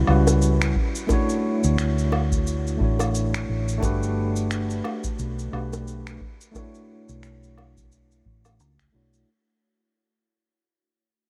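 A dark, round hollow-body electric bass sits up front in this smooth sunset chillout excerpt at 88 BPM, with a swung 16th feel, beside a clean tine electric piano heard through built-in speakers, carrying a low-pass filter, delay and a filter sweep across the chords A13, Dmaj7, Gmaj7 and Bm11. A dry, deep electronic kick enters at 0.8 seconds, while gritty, tape-warm woodblock, cabasa and finger snaps add texture, and tight, high-tuned bongos stay in the background. Light reverb and digital ambience surround the mix as the whole passage fades out over its 9.3 seconds.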